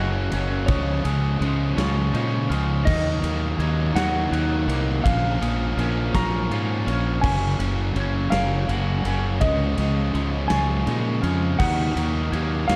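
A dark, dry production with little reverb gives this brooding, cinematic post-rock passage, cut from a longer piece, a heavy and close feel in a slow, swaying 6/8. Up front sits a growly, fuzz-laden fingered electric bass. Around it, a bright distorted electric guitar and a sludgy overdriven guitar further back each play a riff in the low register. A big acoustic rock kit joins at 0.3 s, with a punchy kick, a medium-tuned snare, ride and crash, all with a smooth, rolled-off top and a big-room sound. Over this weight, a clean lap steel guitar sings a dusky slide melody. Tape echo trails both the lap steel and a mellow, bell-like glockenspiel struck with rubber mallets, whose high arpeggios ring softly in the background, while a very quiet, compressed semi-hollow guitar adds clean picked arpeggios beneath, all moving through a somber cycle of chords such as Dbadd9, Ebm and Bbm.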